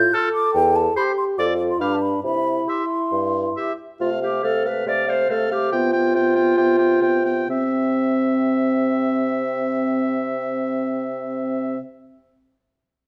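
Spirited and cheerful, this quick classical-period movement for wind quintet in C major moves at 126-147 BPM with a rubato feel, and it is cut from a longer piece. A pure, hollow concert flute sits up front with vibrato to carry the melody until 3.6 s. Beneath it from the opening, the clear, present oboe's second line, the French horn's light-vibrato accompaniment, the distant, roomy clarinet and the mellow, smooth-topped bassoon bass continue through 11.8 s, slowing between 3.1 and 7.5 s in a moderate large-studio reverb.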